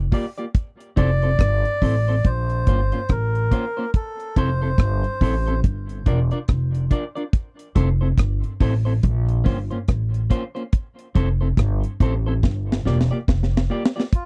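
Laid-back and sunny, this short roots reggae cut rolls along in an easy four with a swung sixteenth-note feel. Up front, a deep drum kit pairs a tight kick and a high-tuned snare with hi-hat and rim clicks, and it closes on a drum fill starting at 12.4 seconds. A woody, thumpy upright bass with steel strings sits just as close, its dark plucked tone anchoring the low end. A clean, twangy electric guitar played with the fingers adds softer accompaniment through a gently cycling progression of Gm7, Fmaj7 and Bbmadd9. A reedy, breathy melodica carries the tune from 1.0 to 5.6 seconds, its nasal, airy voice returning for a brief moment at the very end. The sound is dry and intimate, with little reverb, like a close 1970s studio session.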